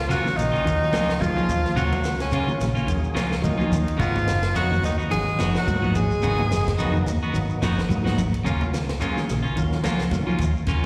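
A bright, vibrato-laden tenor saxophone carries the melody from the very start of this hypnotic, defiant afrobeat excerpt. A distant, roomy trombone plays a second line in the background, and both horns carry slapback echo. Beneath them, a round, amped fingered electric bass sets an Eb minor groove at 108 BPM with a lightly swung sixteenth-note feel, as the chords move from Ebm9 to Abm7 and back. A compact cocktail drum kit sounds dry and natural, with a tight kick, a high-tuned snare and a dark ride cymbal, while ringing, high-tuned congas struck with hard hands and a grainy, mellow shekere sit farther back. A twangy, scooped clean electric guitar plays picked stabs, a slightly broken-up second guitar picks arpeggios in the background, and a full, percussive tonewheel organ with key click and a slow rotary speaker adds accompaniment. The horns stop at 7.0 s, the rhythm section carries on to the cut at 10.9 s, and the band sounds like a live gig heard through the venue's PA, with small-room ambience and recital hall reverb.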